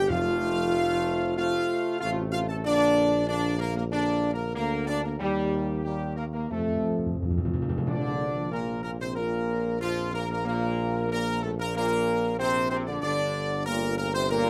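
Captured in fine detail with light reverb, this solemn, regal classical brass passage, cut from a longer piece, moves at 94 BPM in a straight 4/4 in Bb major, tuned to A4 = 438 Hz. A clear trumpet section carries the melody up front with light vibrato, while a mellow French horn section with a smooth top holds sustained chords beneath it. A dark trombone section sits distant and roomy in the background with tight chords, and a tuba with light vibrato anchors the bass, also up front. Timpani struck with medium mallets on calf heads sound close and dry, marking the opening and returning with a fill at 6.5 seconds that leads into a second section at 7.9 seconds. The harmony moves from F through Bb and Eb, then rests on Bb before turning to G minor near the end.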